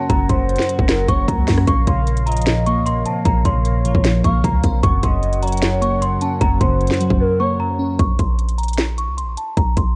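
Worn, warbling cassette-tape sound with warbly pitch drift and a top end capped at 10.8 kHz frames this brooding, hard-hitting half-time trap excerpt at 152 BPM in Bb minor, where a delicate, bell-like celesta melody through a low-pass filter and a smooth, gliding portamento lead with chorus and tape echo float over glassy, up-front digital keys, airy flute-section chords, a deep, boomy 808-style bass and an electronic trap kit with hard-clipped kick, sharp snare and crisp hats that falls silent from 7.2 to 8.0 seconds, after which only the celesta, bass and drums carry on.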